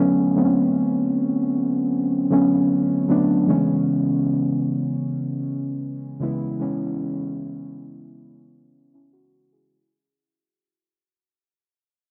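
A straight 4/4 pulse at 77 BPM carries this moody, longing R&B fragment in C# phrygian, cut from a longer piece and tuned to A4 = 439 Hz. A single muted synth keys part with a felt-like character plays alone from 0.0 to 9.9 seconds, sitting up front between C#3 and G#4. Its intimate, warbling, dark and vintage tone has a fast attack and decaying notes, blending triangle and sawtooth waves with a noise layer, with chorus added. The harmony moves from Bm7 to C#m7 at 3.5 seconds, where the second section begins and a fade-out and filter sweep run until 9.7 seconds. A moderate, lush hall reverb wraps the dry, gritty hardware sound, which carries the colour of cassette tape and a low-pass filter.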